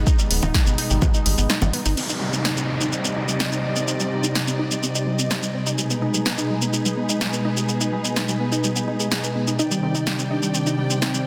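This dense, heavily limited melodic techno clip is cut from a longer piece and set in a huge ambient reverb, with a dark, dramatic mood over a straight 4/4 pulse. A brassy, detuned analog pad plays stabs throughout with chorus, dub echo and sidechain pumping, and a filter sweep opens it over the first 2.0 seconds, while a punchy sawtooth sequencer bass with tube saturation drives only the opening moments. An up-front deep house kit of congas, crash, hi-hat, shaker and a punchy snare runs the whole way, with a deep electronic kick that drops out before the change at 2.0 seconds. A detuned unison pluck with gritty 12-bit sampler texture keeps arpeggios going in the background from the start. From 2.0 seconds a close, sul tasto string section holds smooth, low-pass filtered chords, and a downlifter sweeps through the early part of the new section. At 9.6 seconds a thick, mellow unison lead with lush chorus, vibrato and dub echo enters for a short melody as the harmony moves between A-flat minor and C minor.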